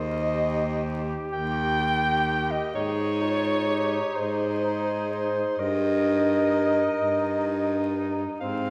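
A punchy alto saxophone with vibrato sits up front on the second line above a clear clarinet melody that lies in the background. Together they open a serene, lyrical classical excerpt for single-reed quartet in a rubato 6/8 at 42 BPM in dotted quarters, moving through Eb, Ab and Eb/G. A close-miked, warm baritone saxophone with vibrato carries the bass, and a mellow, distant tenor saxophone with vibrato enters at 0.3 s with accompaniment. The whole quartet is heard from further back in a wet scoring-stage space with a 2.0 s reverb tail and vinyl crackle.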